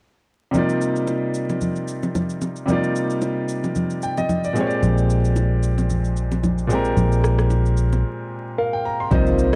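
Swung sixteenths at 112 BPM drive this hypnotic, deep amapiano piece in C minor, where a gritty, vintage-sampled drum kit of deep kick, rim click and shaker and hard-handed congas and bongos frame a brilliant, up-front grand piano moving from Cm11 to Bb13, a round, amped fingered bass joins at 4.8 seconds, and after a break from 8.0 seconds a warbling, chorused FM synth lead, an ethereal glass harmonica in the background and a very quiet electronic impact arrive near the close, set in a dark production with light reverb and vinyl crackle.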